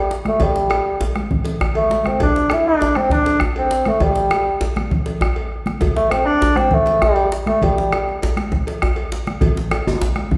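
A mellow bassoon opens the recording, carrying a solo melody with light vibrato and a soft attack in a classical style, up front yet distant and roomy. Almost at once a West African drum ensemble joins in a driving, festive 12/8 groove: a deep, dark bombo, close and dry, sits underneath a medium-tuned djembe and bright, thin-skinned congas played with soft hands and a damped tone. A metallic cowbell rings in the background, set far back in a large room. A drum fill around 1.5 s adds a burst of energy, and the bassoon falls away at 8.2 s while the drums carry on. Near the close, at 9.9 s, a tight, cracking djembe with metal rattles snaps forward for a brief moment, giving this slice of a longer live performance in one reverberant studio room a lively finish.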